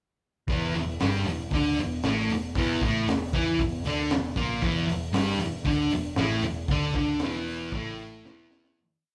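A thick, double-tracked fuzz guitar sits up front with a menacing octave riff in this gritty garage rock piece, doubled by a round, hollow-body electric bass playing driving eighth notes and backed by a dark, saturated breakbeat drum kit with a punchy kick and high-tuned snare, the band playing live in a large studio room before fading out from 6.7 seconds into a closing drum fill at 8.3 seconds.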